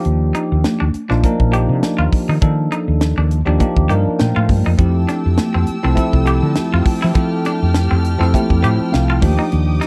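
A growly, round fretless bass sits up front in this bright, slick electric jazz fusion excerpt, riding a lightly swung 16th feel over a tight, dry funk kit with a high-tuned snare and a ringing, very quiet conga part. A bell-like tine electric piano with analog chorus carries the accompaniment and adds fills at 3.6 and 8.3 seconds, while a twangy, compressed clean guitar drops picked stabs through a lush chorus. From 4.8 seconds a soft-attack string section joins with sustained, sul tasto chords, all captured in a dry, close 1970s-style studio sound.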